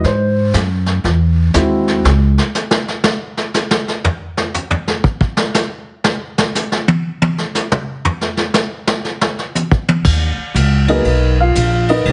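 A dark, mellow upright piano and a pizzicato upright bass with a woody tone open this smoky, swinging jazz trio fragment over a vintage brush kit with dark cymbals and a tight kick. At 2.0 seconds the drums take a solo until the bass returns at 10.0 seconds and the piano at 10.9 seconds, all heard through a heavily compressed, radio-like sound with moderate studio reverb.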